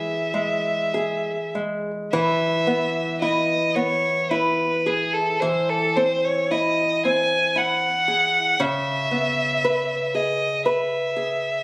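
A romantic duo for violin and classical guitar, this serene fragment of a longer piece moves slowly in 3/4 at 48-59 BPM, with a loose, rubato feel in E major. A single bowed violin carries the melody between G#4 and G#5, its tone rich and focused with a singing vibrato, sitting up front in the mix. Beneath it, a small, fingerpicked nylon-string guitar supplies warm acoustic accompaniment from C#3 to B4, also placed close and present, though a little quieter than the violin. The harmony rests on E before shifting to G#7/E at 5.4 s and settling on C#m7 at 8.6 s. Captured on a phone in the room, the sound has a moderate spring reverb and a club-like ambience, with compression keeping the intimate duo close and even.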